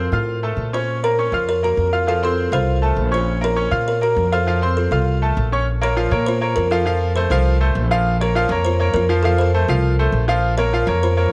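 This fiery, passionate salsa excerpt moves at a brisk 201 BPM in a straight 4/4, set in Bb harmonic minor and alternating between F and Bbm chords throughout its 11.3 seconds. A buzzing kalimba carries the melody in a narrow range from F4 to Db5. It has a woody, hollow-box tone from a thumbnail pluck, and its ringing, vintage, band-limited sound is colored by tape echo. Beneath it, a bright grand piano spans a broad register as accompaniment, brilliant and intimate, with its action noise audible and the instrument sitting up front. The upright bass anchors the low end with pizzicato gut strings, dark and thumpy, and it is the most prominent part in the mix. Light reverb and a small-room ambience give the trio a close, live-sounding space, with the second half beginning at 5.7 seconds as the chord pattern carries on.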